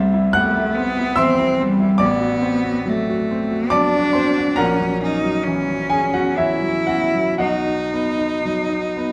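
Elegiac and yearning, this short fragment of a romantic classical duo unfolds in a rubato 3/4 at 57-73 BPM, with a single bowed cello carrying the melody in an intense, vibrato-rich voice with a smooth top while a natural-sounding baby grand piano accompanies from A1 up to F#6, both clear and up front in a moderate recital hall reverb as the harmony passes from C through F#dim/A and F#7/A# to B.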